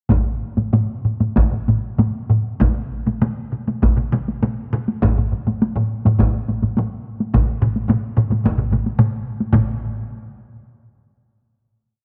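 A solo taiko drum struck with heavy sticks opens this short Japanese traditional piece, playing a close, dry repeating pattern in a straight 4/4 that feels powerful and ceremonial. Two taiko ensemble parts sound from the start alongside it, one with heavy sticks and one with hard sticks, both dry and up front as they carry taiko phrases. At 2.6 seconds a further taiko ensemble enters with hard sticks, heard in a small room and repeating its own pattern up front. The whole piece speeds up from the first stroke, building momentum through the single main section before a final hit arrives at 9.5 seconds. An echo chamber reverb with a long 2.5-second tail lends the complete work a cavernous, resonant sense of space.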